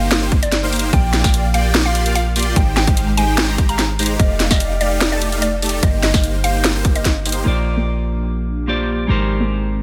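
Awash in light digital reverb, this playful, bright half-time future bass excerpt opens on a drop in which a woody, warbling FM mallet-like pluck carries the melody over huge, detuned supersaw chords with phaser, a deep, boomy 808-style bass, an overdriven trap kit with sharp snare and filtered bright hats, and a hard-clipped electronic kick, before a dark, clean electric guitar with tape echo arrives at 7.4 s and an airy, breathy pad with ring modulation settles into the background at 7.5 s amid a filter sweep.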